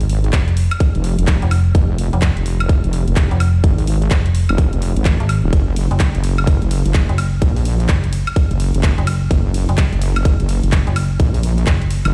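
Gritty and aggressive, this 12-second bass house cut from a longer piece drives at 127 BPM with a swung 16th-note feel over an Fm chord moving to Gb, as a heavy, detuned wobble bass with chorus and sidechain pumping and a metallic, overdriven FM bass sit up front over a tight, layered electronic kick and a garage kit of handclaps, hi-hat, ride cymbal and woodblock, all ringing out in a stone room reverb as if played on a big sound system in a bare room.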